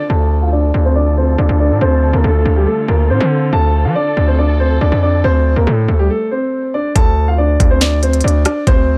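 A dark, boxy grand piano carries the melody over sustained, bowed strings with vibrato in this tense, menacing drill excerpt at 140 BPM in D minor with a half-time feel. A distorted, saturated 808-style bass sits up front beneath them while a filter sweep runs through the opening, and the strings fall away at 6.1 seconds before a brief stop. At 7.0 seconds an electronic drum kit with a knocking kick, sharp snare and crisp hats arrives, all in a small room ambience.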